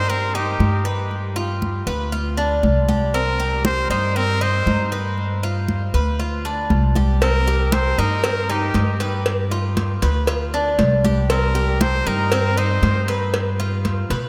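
Latin Cuban son in the guajira style at 118 BPM in C minor, this sultry excerpt sets a bright, vibrato-laden solo trumpet with scooped notes and tape echo over metallic, double-strung tres arpeggios that also carry tape echo, a woody, thumpy gut-string upright bass up front, thick-skinned congas in the background, and a tight, high-tuned cowbell joining at 7.2 seconds, all moving between Cm7 and G7 inside a dreamy cathedral reverb.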